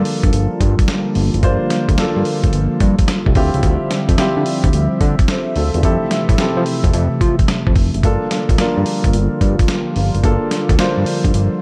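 New jack swing R&B at 109 BPM in G dorian, punchy and confident, riding a heavy 16th-note swing through Gm7, Dm11 and Fmaj7 before returning to Gm7 in this short cut from a longer piece. A dusty, sampler-style drum kit sits up front with gritty, compressed hits, a thumpy kick, a medium-tuned snare, hi-hat and gated reverb, while a fat, saturated analog bass with wave-folded sawtooth edges and a filter sweep anchors the low end. A dark baby grand piano, intimate with audible action noise, plays the accompaniment alongside a lush, detuned unison pad whose chorused chords carry a soft attack and a moving notch, all in a dry room.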